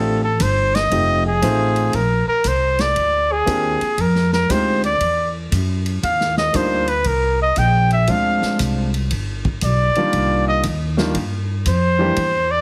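Through a heavily compressed, radio-like sound with light reverb, this playful, sophisticated fragment of small-group swing and bop jazz features a mellow trumpet soloing up front with light vibrato and scooped notes over a clear upright piano with audible action noise, a woody pizzicato upright bass, and a vintage drum kit with a punchy kick and ride cymbal that enters at 0.4 seconds.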